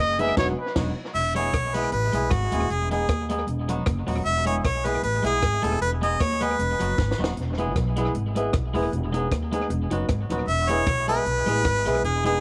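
A bouncy, upbeat ska groove in E major moves at 154 BPM with a light swing, built on a dry, compact cocktail drum kit with a high-tuned snare and dark cymbals, a woody pizzicato upright bass up front, and a twangy, compressed clean electric guitar, with tape echo on both the guitar and the drums. A breathy, whispered trumpet opens with a brief solo punctuated by a band accent, then a clear harmonica with light vibrato takes the melody from 1.1 s, dropping out during a drum fill at 7.0 s and returning at 10.5 s. Mellow, boxy upright piano stabs sit in the background, and the whole piece sits in a small room with light reverb.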